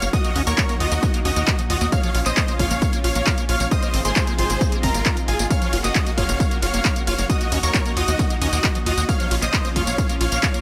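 A huge, euphoric detuned supersaw lead carries the melody with tape echo, driving this soaring uplifting trance passage in Bb minor at 134 BPM over an overdriven electronic kick set up front and a tape-warm analog drum machine of handclaps, hi-hat, ride cymbal and tambourine. A tight sawtooth sequencer bass holds the low end. In the background, a squelchy, resonant liquid acid bass plays arpeggios, a round analog pluck with chorus and digital delay adds a high second line, and a lush, thick unison pad sustains chords moving through Ebm, Bbm, Fm7/Ab and Gbmaj7, all within a digital ambience and with sidechain pumping on every part but the kick.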